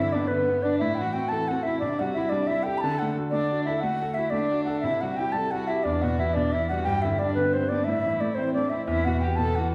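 The recording sits in a reverberant recital hall and is heard from further back in the room, giving the trio a roomy, natural bloom. This lively, cheerful Celtic folk tune in G major moves at 119 BPM in a straight-feeling 12/8, and it is cut from a longer piece. Up front, a bright baroque flute carries the melody with a woody, airy, straight tone and a crisp attack. Beneath it, a single bowed fiddle plays a second line in a dark, sul tasto voice with light vibrato, sounding close and woody. A clear concert grand piano, also up front, supplies the accompaniment with deep bass and a smooth, vintage character, moving through G, Am, C, D and Em across all 9.7 seconds.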